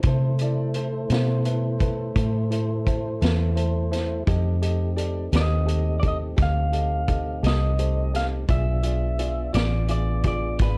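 Slow blues in 12/8, this smoky, brooding excerpt from a longer piece moves from A minor through F7 to a tense E7b9. A muted, fingered electric bass sits up front with a dark, round and punchy tone, beside a vintage drum kit whose punchy kick, medium-tuned snare and hi-hat have a rolled-off top and a mid-forward studio-room character. A woody, boxy upright piano with short sustain supplies accompaniment and adds a brief fill at 3.2 seconds, while a lightly overdriven tonewheel organ holds sustained chords through a slow rotary speaker, its key click and vibrato audible. At 5.4 seconds an electric guitar takes the melody through a small old amp, slightly broken-up, compressed and lo-fi, with a subtle chorus. The production is dark and dry, with little reverb and lossy compression artefacts that add to its late-night feel.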